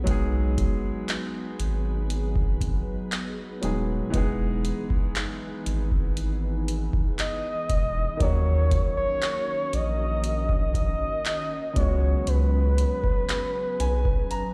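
Contemporary R&B at a slow 59 BPM in B major, smooth and tender, with a booming analog drum machine of deep kick, metallic hats and handclaps up front beside a thick, saturated sine sub bass, while a clear concert grand piano accompanies and a glassy, ethereal FM pad with ensemble chorus sustains chords moving from B6 through Emaj7 and D#m7 to C#7sus4, a gliding, vibrato-tinged portamento lead with chorus and delay enters at 7.2 s, and the piano adds a fill at 13.3 s in this excerpt from a longer piece.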